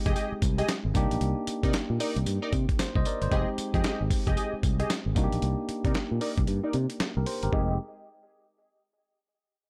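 A swung new jack swing groove at 114 BPM in 4/4 drives this confident, punchy R&B clip in F dorian, built on a gritty, sampler-style drum kit with a thumpy kick, medium-tuned snare, hi-hat and tambourine sitting up front alongside a fingered electric bass. A bell-like tine electric piano voices a rootless Fm9 moving to Cm9 while a detuned sawtooth polysynth adds funky stabs coloured by chorus and tape echo. A filter sweep runs through the opening 7.5 seconds, the kick drops out from 6.5 to 7.5 seconds, and the room stays dry.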